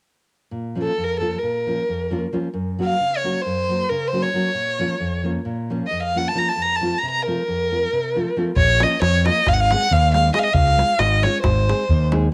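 Fiery and virtuosic Balkan wedding-band folk, cut from a longer piece: a close, expressive bowed violin with a soft attack carries the melody with vibrato and portamento, over a warm fingerpicked nylon-string guitar with a deep classical tone, both up front and colored by cassette tape. At 8.6 seconds the music moves into a new section as a growling, overdriven fingered electric bass enters, bright and direct, alongside a tight davul set in the background. The sound sits in a small room with light reverb, like a home recording on cassette.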